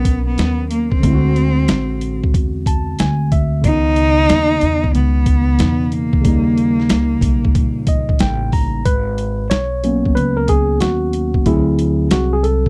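A close, bowed cello with rich vibrato carries the melody up front in this smoky, nocturnal jazz-hop cut in G# minor at 92 BPM, swinging in 4/4 over a rootless G#m11, then D7#11, C#m9 and D#7 harmony. A worn, slightly out-of-tune tine electric piano, clean through its built-in speakers, sits up front comping and adding fills while a woody, gut-strung pizzicato upright bass and a gritty, pitched-down boom bap sampler kit with a thumpy kick and tape-warm compression hold the groove. The cello drops out at 8.2 seconds, and from 8.9 seconds the electric piano takes a solo in this dry, close 1970s-style studio sound, part of a longer piece.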